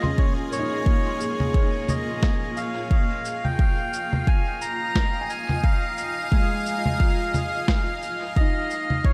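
A reedy, breathy melodica carries the melody up front through dub echo in this meditative, deep ambient dub excerpt at 88 BPM in F minor. Beneath it sit a cloudy, evolving granular pad with its own reverb, soft arpeggios on a felt-muted upright piano with audible action noise, muffled tape-warm congas, cabasa and snare echoing over a layered, deep electronic kick, and a glassy drifting harmonics texture that enters at 3.5 seconds.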